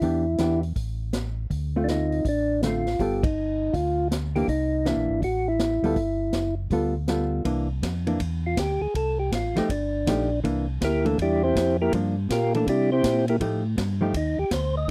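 Soul jazz organ trio in C mixolydian at 161 BPM, swinging and soulful, with a percussive tonewheel organ carrying the melody through a slow rotary speaker over a dark, clean hollow-body guitar accompaniment, a round, lightly overdriven organ bass with chorus vibrato, and a punchy, natural big-band drum kit on hi-hat, ride, snare and kick. The band hits an accent at 3.2 seconds, and from 7.5 seconds the organ takes a solo over chords moving through C9, F9 and Gm7. The sound is a dry, close 1970s-style studio recording in a small room, cut from a longer piece.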